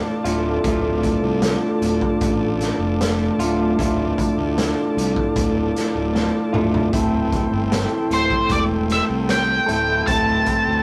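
A slow, straight 4/4 pulse at 76 BPM drives this hypnotic, mysterious psychedelic rock passage in D minor, cut from a longer piece. The raw garage drum kit enters at 0.3 seconds with a punchy kick, medium-tuned snare, hi-hat and toms, sounding saturated and gritty in a pumping small room with a rolled-off top, and it plays a fill between 6.1 and 6.9 seconds. Beneath it, a round, overdriven fingered bass with dark fuzz holds the low end, while an electric guitar through a small old amp plays a picked riff up front, its slightly broken-up, lo-fi tone compressed and colored by phaser. A vintage, reedy combo organ with heavy vibrato and overdrive sustains chords above, moving from Dm to Am7/D. At 8.1 seconds an octave-fuzz lead guitar enters up front with a dark, distorted picked melody in a high register. The whole has the rough feel of a rehearsal-room recording with moderate ambience.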